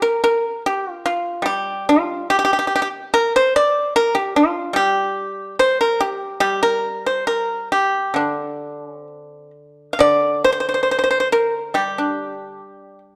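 A solo pipa, bright and percussive under its fingerpicks, sits up front through this 13.2-second cut from a longer Chinese traditional piece, ranging from D3 to F5 in a longing, elegant mood. The playing moves in a free rubato around 64-74 BPM in 4/4, shifting to a new passage at 10.0 seconds. A moderate recital-hall reverb and a dark production surround the instrument's crisp attack.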